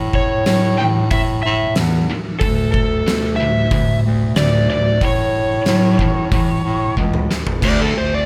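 A bright bass clarinet sits up front in this short, smoky blues rock clip with a southern rock edge, carrying the bass line in a jazz style with vibrato and scooped notes across its low register. The tempo is a straight 92 BPM in 4/4, and the harmony moves between A and D5. A distorted electric guitar drives the riff, picked and double-tracked with a compressed, bright bite, while an overdriven slide guitar played with fingerpicks sings the melody high above in a warm tone. The oversized, low-tuned acoustic drum kit is saturated and gritty, with a punchy kick, fat snare and dark cymbals ringing in a bright stone room that pumps around them. A drum fill runs from 7.0 to 7.6 seconds, and moderate studio reverb gives the whole band a sense of shared space.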